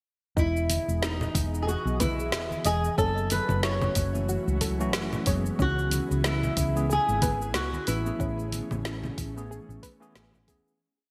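Sunset chillout in E major at 92 BPM, with a sunny, blissful mood and a 16th-note swing that keeps the groove relaxed from start to finish. Up front, a dark, fingerpicked flamenco guitar carries a motif-based melody through lush chorus and delay, with audible finger squeaks. A round, hollow-body fingered electric bass plays a dotted-rhythm line, joined by a soft, tape-warm electronic kick and a light lounge beat from a deep house kit with a woody snare, dark hats, cabasa and gated reverb. Very quiet, saturated congas with soft hands sit beneath, while an ethereal, detuned pad with a slow attack and a gentle, nasal pluck arpeggio with cassette-tape character hover in the background. From 4.1 seconds a worn, slightly out-of-tune tine electric piano adds syncopated chord stabs over the Emaj7 to Amaj9 progression, and the piece fades out from 7.3 seconds to its close at 10.8 seconds, all framed by a bright 1980s-style digital production and a lush hall reverb.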